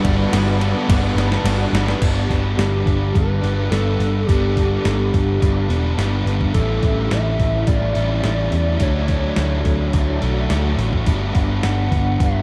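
A reedy, warbling FM lead with chorus and tape echo carries the wistful melody through this dreamy rock excerpt steeped in shoegaze and dream pop, floating over two overdriven electric guitar riffs, one with ensemble chorus and one with reverse reverb, a dark, round, foam-muted bass up front and a thumpy 12-bit drum machine, while a lush string machine and a biting double-tracked guitar sit in the background for the first 2.0 seconds, where a drum fill closes the opening section, before the harmony settles from Gmaj9#11 onto G and the whole mix drifts in a huge ambient reverb.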